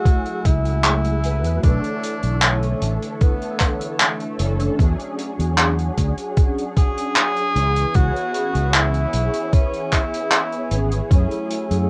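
This hazy, melancholic vaporwave excerpt opens on a breathy tenor saxophone melody with smooth top notes, light vibrato and scooped notes, played in a jazz style over mellow synth brass. The brass is dark, round and detuned, with a sawtooth edge, filter sweep, chorus and tape echo, while a warbling, lo-fi tape-like pad sits in the background, holding nostalgic sustained chords through its own chorus and reverb. At 0.1 seconds a thumpy, sampler-style electronic kick arrives up front alongside an open jazz drum kit of handclaps and hi-hat, both carrying a gritty 12-bit sampler texture. A fingered electric bass enters at 0.4 seconds, sounding warm, round and direct in the low register. The piece moves at a slow, straight 76 BPM in 4/4 in B dorian, tuned slightly flat to A4 = 436 Hz, cycling through F#m9, Bm11, E13 and C#m7. The dry, rough home-demo mix carries a cassette-tape character.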